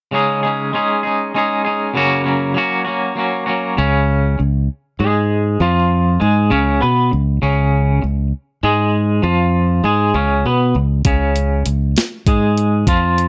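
A twangy, clean electric guitar opens this wistful, jangly indie rock excerpt with a tremolo-tinged riff in a straight 6/8, moving from Dbsus2 to Gb. At 3.8 seconds a bright, direct fingered bass enters up front as the harmony settles on Db. At 11.0 seconds a crisp 8-bit drum machine joins with a thumpy kick, a medium-tuned snare and hi-hat, all in a dry room.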